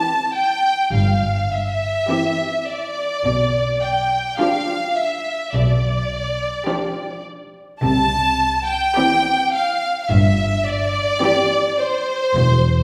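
Tender and warm, this slow, romantic classical fragment for string orchestra features a rich, focused violin section carrying the melody up front with vibrato, a second violin line sitting smoothly in the background, and bowed violas adding lush accompaniment, while cellos and double basses join at 0.9 s to anchor the bass as the harmony moves from C to G7/B and back, wrapped in the reverberant air of a recital hall.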